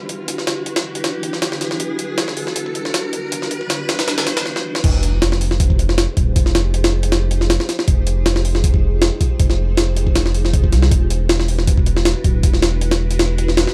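A riser and sub drop open this cut from a longer drum and bass and jungle piece, sitting electronic and in the background under a dark, nostalgic haze of vinyl crackle and dry, gritty hardware character. A sampler-style jungle kit comes in almost at once, its compressed, pitched-up sound built from a thumpy kick, a medium-tuned snare, hi-hat and crash, all tape-warm and up front, with high-pass filtering on each drum. The build-up closes with a drum fill and a brief stop between 4.5 and 4.8 seconds. At 4.8 seconds the drop lands with an impact, and a saturated sub bass enters, deep and thick with a triangle tone, fast attack and sustained notes ranging from D1 to C2, pushed up front alongside the drums. The groove carries a light swing on the sixteenths, and the digital ambience keeps the whole thing close and raw through to the end at 13.7 seconds.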